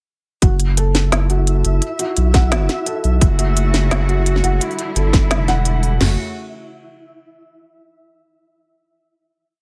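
An overdriven trap kit with a hard-clipped kick drives this heavy, cinematic half-time drum and bass piece at 172 BPM in F# phrygian, its kick, sharp snare, toms and crash sitting up front beside a second overdriven electronic kit with a woody snare and crisp hats. A deep, saturated sub bass chops out thick phrases underneath, while a dark felt-muted upright piano loops a 12-step arpeggio that drifts against the bar, its action noise audible through tape echo. A flickering, granular texture holds a high note from 1.0 s, and a lush, distant cello section enters at 3.2 s with bowed sustained chords that pump under the beat before the drop resolves on a final F#m chord at 6.0 s.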